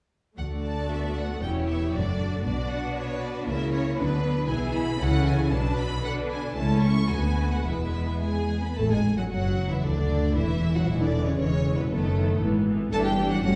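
A focused, vibrato-rich violin section carries the melody over a second violin line with portamento, a lush viola section, and smooth, even cellos and double basses in this spirited, graceful classical-period excerpt at 116 BPM in 2/4 with a rubato feel, moving from D major to A major at 4.5 seconds, with a dark, tight French horn section adding sustained chords in the background from 8.2 seconds, all heard from further back in a reverberant recital hall.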